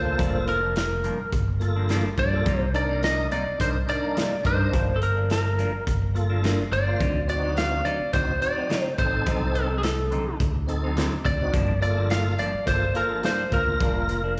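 A lightly driven lead guitar carries the melody up front, its twangy, slightly broken-up tone compressed and trailed by a slapback echo. This soulful, brooding soul blues excerpt moves in a straight-eighth groove with a gentle sixteenth-note swing. A tonewheel organ sits lower in the mix, full and clean through a slow rotary speaker and chorus vibrato. A fingered electric bass sounds round and dark, direct and amped close to the front. A clean, scooped semi-hollow guitar adds phased stabs from 0.1 seconds, and a crunchy breakbeat kit enters at 0.2 seconds with a punchy kick, medium-tuned snare, hi-hat and a gritty, rolled-off top. The harmony moves from Gm7 through Cm7 to a tense D7b9 before settling back on Gm7, all heard as a live gig through the venue's PA with recital hall reverb.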